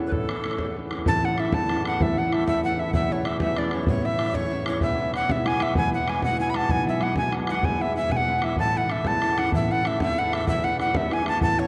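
Awash in a vast, echoing cathedral space, this short cut from a longer Celtic folk slide in straight-feel 12/8 feels lively and cheerful. A breathy, bright tenor recorder carries the tune up front with a woody chiff on its tongued notes, while a concert harp, fingerpicked and ringing, sits close alongside as accompaniment, moving from A to E and back to A by 8.6 seconds. Behind them a boomy, open bodhran keeps the pulse from a distance, and the brief opening section gives way to a second one at 1.1 seconds.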